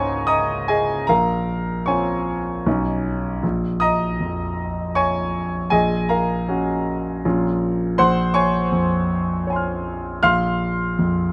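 Moving in an unhurried triple metre with uneven, rubato beats, this brief impressionist solo piano passage, cut from a longer piece, drifts through rich extended harmonies that give it a dreamy, hazy mood. A clear concert grand carries everything alone across its span from deep bass notes up into the high treble, sounding open and up front. Close, detailed microphones and very little reverb keep each chord intimate and precisely defined.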